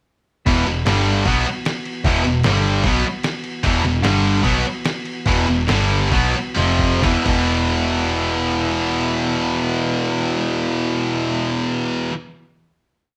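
A straight 4/4 hard rock groove drives this short, menacing piece in E minor, pushing along between 128 and 152 BPM before it starts slowing down at 3.6 seconds. Two bright, up-front guitars carry the power-chord riff, one overdriven and the other high-gain and distorted, while a dark, round hollow-body electric bass plays driving eighth notes that double the guitar riff. A lo-fi sampler-style drum kit gives a big rock groove, its pitched-down, muffled sound built on a thumpy kick and a fat snare with crash cymbal and toms, and it plays a fill at 6.6 seconds. Underneath, a very quiet tonewheel organ holds a piping, scooped, clean pad through a slow rotary speaker. At 7.0 seconds the band lands on a final chord and lets it ring. The parts share a room with moderate studio reverb, giving the sound a live-band feel.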